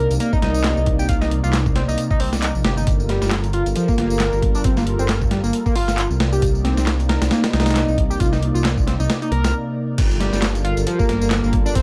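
A screaming, guitar-like overdriven synth lead plays a gritty riff over this energetic breakbeat excerpt at 135 BPM in G minor, swung on the sixteenths and set in light reverb. The lead sits beside a deep, rumbling detuned saw bass and thumpy, compressed sampler-style breakbeat drums that sit up front, with overdriven electronic tambourine and handclaps in the background. A swirling phased analog pad sustains Cm9 and Gm9 chords with sidechain pumping, and after a short break at 9.5 seconds the track drops at 10.0 seconds into a new section.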